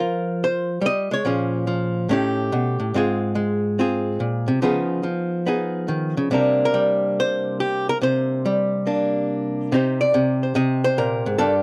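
Solo jazz in C minor at 142 BPM with a swung feel, this brief cut from a longer piece has a smoky, cool mood carried entirely by a miked and amplified archtop guitar, its electric, dark, clean, compressed hollow-body tone sitting up front and spanning G2 to Eb5. The picked lines move through rich harmony such as Bbm7, A7#11 and Db9 before settling on Cm9 at 9.7 seconds, where a new section begins. Light reverb colors a dry, close recording with a 1970s studio character.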